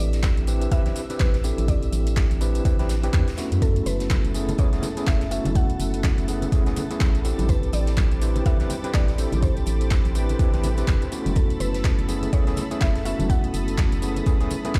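Deep house at 124 BPM with a late-night, deep mood, this excerpt pairs an up-front, tape-warm electronic kick and a layered kit of handclaps, metallic hats and tambourine with a hollow, organ-like FM bass pumping under gritty, barky overdriven electric piano stabs through tremolo and digital delay, while a woody mallet-like synth pluck melody with dub echo, a silky string machine, a very quiet big-room arena kit, a smooth analog pad entering at 3.6 s and ringing congas from 4.1 s drift over Am11 and F#m11 chords in a stone-room reverb.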